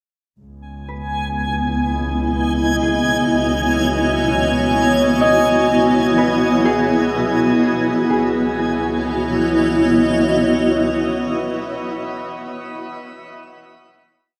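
Serene and reflective, this short ambient piece opens on a lush, bowed double bass section holding a sustained root with smooth vibrato, fading out over the first 8.1 seconds. Meanwhile a concert harp fades in with scattered, thumb-plucked notes through a delay, sitting in the background. Up front, a bright, blurred granular cloud pad carries slowly shifting chords, joined by a dreamy, reversed swelling texture on a held high note, all steeped in a long shimmer reverb that carries them into a final chord from 8.1 seconds.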